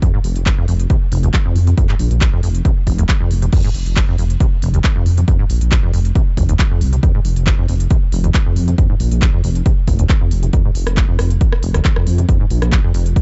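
A squelchy, resonant acid saw riff with chorus, sidechain pumping and a running filter sweep drives this dark, industrial peak-time techno excerpt in F minor at 137 BPM, over a punchy, up-front electronic kick, a small-room techno kit of crash, handclaps, smooth hi-hats and rim clicks, and a deep, rumbling detuned unison bass with tube saturation and its own pumping that enters at 0.2 seconds, all captured in a dry, gritty hardware recording with transformer saturation and a dulled cassette-tape top end.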